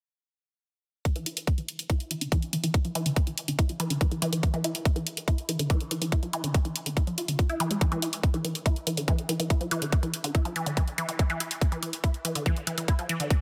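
A dense, heavily limited modern master with light reverb carries this hypnotic, alien psychedelic trance excerpt at 142 BPM, where a tight, up-front electronic kick and warm, layered hi-hats drive a lush, punchy, detuned sawtooth unison pluck riff between D3 and F4, coloured by cassette tape, sidechain pumping and dub echo, while a filter sweep moves across the synth arpeggio sound from 1.1 seconds to the end.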